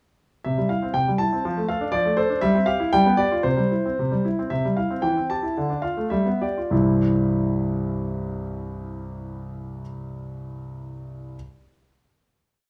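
Heard up front with light reverb, an intimate, clear grand piano rings with long sustain and a touch of audible action noise, giving this short, complete classical-period sonatina a natural, close feel. Played solo in C major and 2/4 at a rubato 94-124 BPM, the cheerful, elegant piece sets a single-line melody over a broken-chord bass, moving through simple tonic, supertonic and dominant harmonies. The opening phrase gives way to a brief coda as the playing slows from 4.0 to 6.7 seconds, settling onto a final C major chord that rings until 9.2 seconds.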